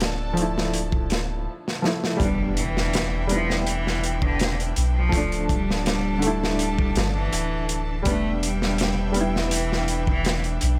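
A close, small-room sound frames this dark, hypnotic trip hop excerpt, where a gritty, saturated breakbeat kit with a punchy kick and a deep, round dub sub bass sit up front beneath a felt-muted upright piano carrying tremolo and vintage sampler grit, lush bowed strings holding sustained chords, and, after a drum fill at 1.7 seconds, a focused solo cello melody with dub echo entering at 2.2 seconds alongside a very quiet electronic impact.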